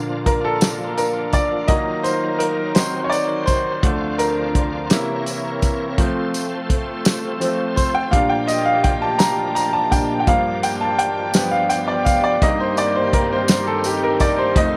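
Slow gospel in 6/8 at 56 BPM in Bb major, jubilant and uplifting, with a brilliant, up-front grand piano taking the lead over chords moving from Bb through Ebmadd9, C7b9 and Gm7, backed by a fat-snared, tight-kicked soul drum kit with a rolled-off top, a jingly close tambourine, a full, shouting tonewheel organ with light overdrive, chorus vibrato and slow rotary speaker in the background, and distant, floating chamber strings, all set in a moderate spring reverb.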